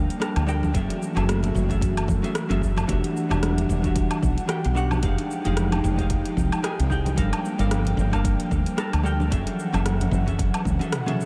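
Opening on a clean, compressed hollow-body jazz guitar with tape echo over an airy, breathy pad with chorus and a round, up-front fretless bass, this wistful, relaxed sunset chillout excerpt at 112 BPM with a 16th-note swing adds an overdriven deep house kit of metallic hats, rim click, shaker, toms and woodblock, very quiet ringing congas and a deep overdriven electronic kick, all drifting through drowsy minor ninth chords in a dreamy mix soaked in huge ambient reverb until a drum fill at 10.7 seconds.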